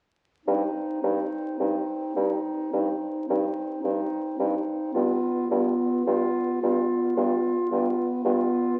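This sounds like a very old 78 rpm record, its vinyl crackle sitting over a wet recital hall whose reverb lingers for about 1.6 seconds. The music is a slow, solemn and elegiac romantic movement for wind quintet in C minor, moving at 54 BPM in 4/4 with a rubato feel, cut from a longer piece. A clear, present clarinet carries the accompaniment in a narrow span from Eb4 to F4, while a mellow French horn with light vibrato sounds distant and roomy as it holds a narrow span just beneath it, between B3 and C4. Beneath them, a bassoon with a vintage, mellow tone and light vibrato anchors the bass on G2, stopping at 8.4 seconds just before the others finish at 8.8 seconds. The harmony rests on C minor over G before turning to G7 at 5.0 seconds, leaving the phrase hanging in grave expectation.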